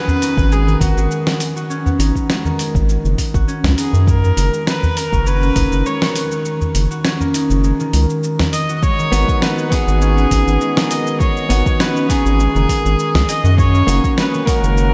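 A round, dark analog bass sits up front through this hypnotic organic downtempo excerpt in G# minor at 101 BPM, anchored by a deep electronic kick that drops out from 6.5 to 8.8 seconds, beneath a clear, biting kamancheh melody with light vibrato, portamento and an airy bow, and ringing fingerpicked concert harp arpeggios, both carrying delay. A gritty, compressed sampler-style kit of cabasa, hi-hat and snare moves with a gentle 16th-note swing, joined by a small, close and dry udu until 8.5 seconds, while a clean electric guitar with sidechain pumping and delay enters at 9.1 seconds. The whole excerpt floats in a dreamy mix soaked in cathedral reverb, opening on a G#m7 chord.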